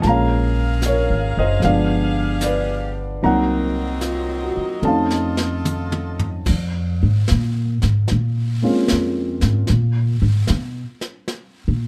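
A dark, mellow concert grand piano opens this smoky, melancholic jazz ballad in Bb minor, joined at once by an edgy saxophone section holding tight sustained chords with vibrato, a woody pizzicato upright bass and a brushed drum kit. At a slow 75 BPM with a swung feel, the harmony moves from Bbm7 through G7b9 and Cm7b5 to F7b13, and the piano sits up front with an intimate, vintage character, audible action noise and deep bass. The drums, recorded in a studio room with a medium-tuned snare and a boomy kick, play a fill from 4.8 seconds. At 6.5 seconds the saxophones stop and the upright bass takes a solo, its steel strings sounding close and up front over piano and brushes. The piano drops out at 9.7 seconds as the harmony lands on a rootless G(#9), leaving bass and drums to close this fragment of a longer piece. Light reverb surrounds the group, and lossy compression artefacts are audible in the sound.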